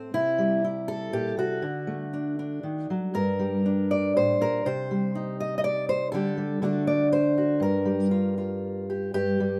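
In a loose, rubato 3/4 lilt around 121 BPM, this intimate, reflective folk excerpt in G minor features a solo fingerpicked steel-string acoustic guitar, dark and woody with the dull bite of old strings, sitting up front in light reverb as it moves through C, D, Gm, Cm and a Dsus4 resolving to D before settling on Gm7 near 7.6 seconds.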